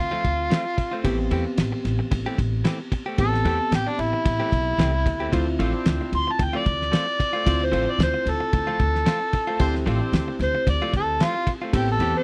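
Mournful and smoky, this straight-eighth soul blues moves at 112 BPM in 4/4 with a light sixteenth-note swing, its short span centred on an up-front, overdriven harmonica solo full of gritty tone, light vibrato, tongue slaps and scooped notes. Beneath it sit a barky, reedy electric piano through a combo amp, a woody, thumpy pizzicato upright bass, clean picked stabs from a direct-recorded electric guitar, and a cloth-damped, thuddy drum kit with a fat snare, tight kick and dark ride cymbal, all circling Dm7 and Am7. At 5.3 seconds a brilliant, vintage horn section enters with octave-doubled sustained chords, all within a dry, close 1970s-style studio sound.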